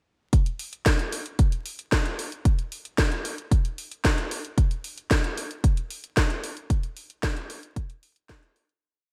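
Bittersweet and nostalgic, this short Italo disco piece is built entirely on drums: a punchy, up-front electronic kick holds a four-on-the-floor pulse while a layered house kit adds open and closed hi-hats and a cracking snare bathed in gated reverb. The bright 1980s-style digital production carries light reverb and vinyl crackle, giving the disco machine beat a gently worn, remembered quality. The whole thing fades out from 6.0 seconds, with the kick dropping away at 8.4 seconds just before the kit closes at 8.8 seconds.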